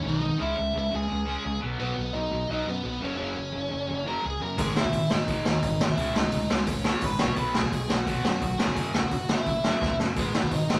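A biting, overdriven lead guitar sits up front from the very first second, carrying the melody of this rebellious, upbeat punk rock excerpt. Beneath it, a bright, compressed distorted electric guitar grinds out the riff while a fuzzy, punchy picked bass drives the low end in straight 4/4. At 4.6 seconds a raw garage drum kit comes in with a punchy kick, a medium-tuned snare and hi-hat, sounding gritty, saturated and mid-forward with a rolled-off top, and a very quiet hollow-body semi-hollow guitar joins the riff at the same moment. A drum fill at 9.8 seconds pushes toward the cut-off, as the chords move through C#m, B and F# before landing on G#m. The whole thing has the rough feel of a rehearsal-room take, with tube saturation and a light reverb.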